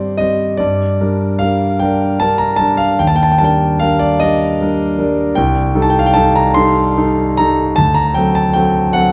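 In a rubato 12/8 at 50 BPM counted in dotted quarters, this wistful, mournful romantic nocturne in G minor, cut from a longer piece and tuned to A4 = 437 Hz, features a solo concert grand piano, intimate and up front with deep bass, a vintage character and audible action noise, ranging from C2 to C6 as it moves from Cm/G through Gm, Ebmaj7 and Am7b5/C to a D7 at 7.8 seconds, all within a wet recital hall reverb.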